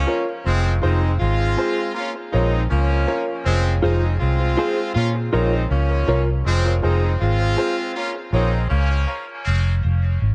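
The recording opens on a break, with a round, foam-muted electric bass up front and a clear horn section, also up front, carrying a second line softened by a touch of vibrato and tape echo. A woody upright piano enters at 0.1 seconds with stabs tucked into the background, its intimate sound revealing audible action noise. This is meditative, heavy reggae cut from a longer piece, moving at 80 BPM in 4/4 with a light 16th-note swing, in F minor and alternating between Fm and Bbm chords. From 3.8 to 6.3 seconds, a dark, compressed semi-hollow guitar adds clean accompaniment in the background, colored by tape echo. A filter sweep runs from 6.5 seconds to the close at 10.3 seconds. The echo-heavy mix sits in a small room with light reverb, and its top end is capped at 10.3 kHz.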